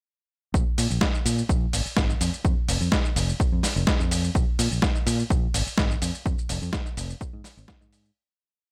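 Nostalgic and funky, this short filtered disco house piece runs at 126 BPM in a straight 4/4 groove from 0.5 seconds, with a punchy, tape-warm electronic kick holding a four-on-the-floor pulse under a gritty, overdriven sampler-style kit of programmed hats, shaker and a medium-tuned snare on the backbeat. A dark, round fingered electric bass plays a syncopated funky line through a low-pass filter that sweeps across the whole groove, while sidechain pumping makes the bass, hats and percussion breathe. Set in digital ambience, the piece fades out from 5.6 seconds to its end at 8.2 seconds.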